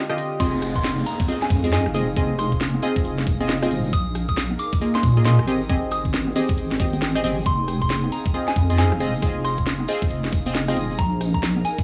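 This late-night, skippy two-step UK garage excerpt opens with punchy, wave-folded chord stabs and an airy, breathy pad drifting in the background, with a house drum kit of cracking snare, bright overdriven hats, rim clicks and congas arriving just after. At 0.4 seconds the drop lands: a compressed, pitched-down electronic kick thumps in, a deep, dark wobble bass sits up front, and a jingly acoustic tambourine adds shimmer from a live room. Over the top, a soft FM synth bell carries the melody in a pure, mellow upper register, colored by phaser and analog delay, while an electronic downlifter sinks in the background until 3.9 seconds. The groove swings its sixteenths at 136 BPM in F minor, moving through Fm7, Bb7sus4 and Abmaj7. The mix sounds dry and gritty, with cassette-tape and transformer saturation, a small room ambience and a light digital reverb.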